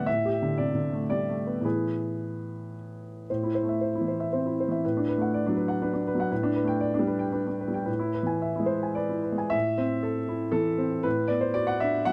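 A solo grand piano opens the recording at 0.0 s, its tone warm and slightly boxy, placed up front under close, detailed microphones with very little reverb. This short passage, cut from a longer neoclassical minimalist piece, moves in a rubato 3/4 at roughly 106 to 124 BPM, and its mood is reflective and wistful. Set in A dorian, the harmony keeps returning to an A foundation, drifting from G5/A and E/A into Am, Bm/A and G/A. A fresh phrase begins at 3.3 s, and another arrives at 9.5 s, circling back to Am and Bm/A. The piano spans from A2 up to G#5, and its intimate, dry presence makes the performance feel near and personal.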